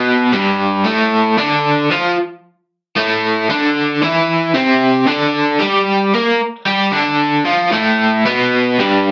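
A small, wet room surrounds this short rock passage, its 0.5-second reverb giving the sound a close, enclosed feel. A single electric guitar plays alone from start to finish across 9.1 seconds: bright, crunchy and overdriven, picked and double-tracked, sitting up front in the mix with a tremolo effect. The mood is cool and restless, moving at 113 BPM in a straight 4/4 feel in D minor. The part spans G2 to Bb4 as the harmony shifts from G9 to Dm7 at 3.5 seconds and then to Gadd9 at 7.7 seconds. It sounds like a fragment lifted from a longer piece.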